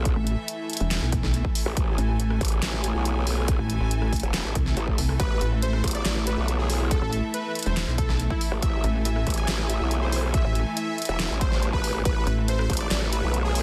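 Heavy wobble dubstep in a menacing, chaotic half-time groove, where an aggressive growling bass and a detuned pulsing pluck wobble bass sit up front over a punchy overdriven kick and a dubstep kit of deep snare, handclaps, hi-hat and rim click, while a biting string section holds sustained chords and an airy, breathy pad sustains a soft texture, both in the background with sidechain pumping. A very quiet electronic swell appears at 4.6 seconds, and a smooth, evolving supersaw melody with delay enters at 5.2 seconds, all in a dry, dense, heavily limited mix cut from a longer piece.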